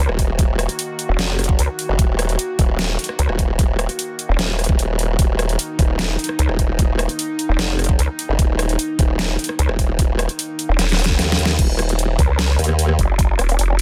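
A layered dubstep kit with a deep snare, bright hi-hats, rim clicks and crash cymbals sits up front alongside a knocking, overdriven electronic kick, together driving a half-time 4/4 groove, with a drum fill at 10.8 s. This is heavy wobble dubstep with a menacing mood, cut from a longer piece and holding a drop on E-flat minor throughout. Two wobble basses dominate the low end, both chorused, overdriven and compressed: a nasal, resonant vowel-sweep bass and a saturated formant-sweep bass built on a pulse wave. Far back in the mix, an evolving wavetable pad sustains full-bodied, warbling chords with chorus, its own reverb and sidechain pumping, until it stops at 11.6 s. The sound is dry and dense, with a heavily limited modern master.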